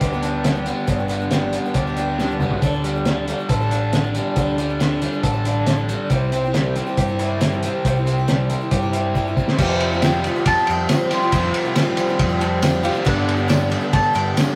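A rough rehearsal-room recording with warm saturation carries this nostalgic folk rock and heartland rock excerpt, where a boxy parlour acoustic guitar, a crunchy double-tracked overdriven guitar riff, a round hollow-body electric bass and a cloth-damped, thuddy drum kit with a fat snare drive the opening, before a woody mandolin melody, a worn concert grand piano and a reedy tonewheel organ through a slow rotary speaker join at 9.6 seconds, followed by a jingly tambourine at 10.0 seconds and a piano fill at 12.2 seconds.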